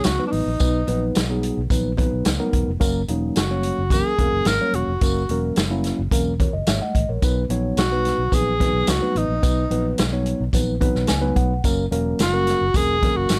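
Warm and joyful, this short cut from a longer uptempo 1960s-style soul piece moves in a straight 4/4, with the harmony settling between B and F#. A breathy tenor saxophone carries the melody up front, playing in a jazz style with a smooth top, light vibrato and scooped notes. Beside it, a worn, slightly out-of-tune tine electric piano supplies clean, direct accompaniment and slips in a brief fill from 10.8 to 11.6 seconds. Underneath, a dark, round, foam-muted fingered electric bass and a vintage acoustic drum kit with a tight kick, medium-tuned snare and hi-hat hold the groove, the kit sitting up front with a natural studio-room sound. Jingly tambourine rides in the background while high-tuned, ringing congas sit very quietly beneath, and the whole mix stays dry with little reverb.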